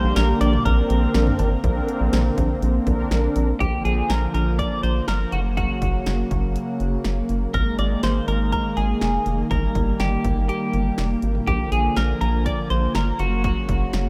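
A rubbery, up-front square-wave bass anchors this upbeat, nostalgic synth-pop fragment, cut from a longer piece, where a clean, compressed twelve-string electric guitar carries the melody through subtle chorus, delay and shimmer reverb over a bold, evolving brassy analog pad and a punchy analog drum machine of kick, snare, hi-hat, toms and cowbell, while a round, mellow synth brass with vibrato plays only until 3.5 seconds, all in a rough home demo mix with light digital ambience.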